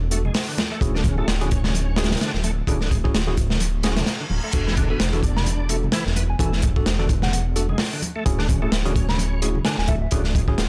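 An excerpt of funky, energetic breakbeat at 129 BPM in E mixolydian with a 16th-note swing, where a crunchy, gritty breakbeat kit with dark cymbals and a tight kick drives up front beside a thick, beating, saturated detuned saw bass, while a bright, shouting tonewheel organ riff with key click and slow rotary speaker, worn, slightly out-of-tune tine electric piano stabs, and soft-handed congas and bongos in the background move between E7sus4 and Dmaj9#11, until a very quiet reverse cymbal and impact mark the drop at 4.5 seconds and a soft, pure FM synth bell melody with old-record grit enters at 5.4 seconds.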